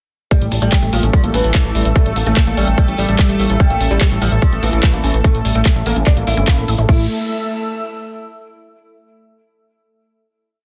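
Psychedelic trance at 146 BPM in a straight 4/4, hypnotic and driving, running as a single drop from 0.3 seconds to 6.9 seconds before a final chord rings out to 8.5 seconds. A tight, up-front electronic kick pounds four-on-the-floor, joined by a programmed drum and bass kit of claps on the backbeat, metallic closed and open hats and a crash, while grainy hand-played maracas shake sixteenths close and dry in the background. Underneath, a fat, detuned analog bass rolls in sixteenth notes between G1 and A1 with a filter sweep and ring-modulated edge. Over this a plectrum-plucked fretless oud with double strings repeats a deep riff melody through phaser and delay, pumping with the kick, while a woody wave-folded pluck plays an accented acid line whose 12-step loop drifts against the bar, soaked in chorus and digital delay. A bright, bubbling drone with random filter steps and an airy, breathy pad of slowly shifting chords, the pad lingering alone to 8.5 seconds, fill the back of a dense, heavily limited mix with light reverb.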